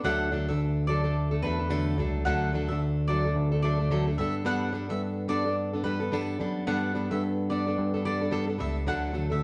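Acoustic pop at 109 BPM in D major, easy-going and heartfelt, with a gentle sixteenth-note swing and chords moving from D to Gadd9 and back to D around 8.9 seconds. A dark, woody, fingerpicked steel-string acoustic guitar with old strings sits up front as accompaniment, while a bright, double-strung mandolin plays picked arpeggios above it and a barky, bell-like tine electric piano carries the bass line from 0.1 seconds. The band plays live together in a stone room whose wet reverb rounds out the sound, and the top end stops around 10.4 kHz in this short cut from a longer piece.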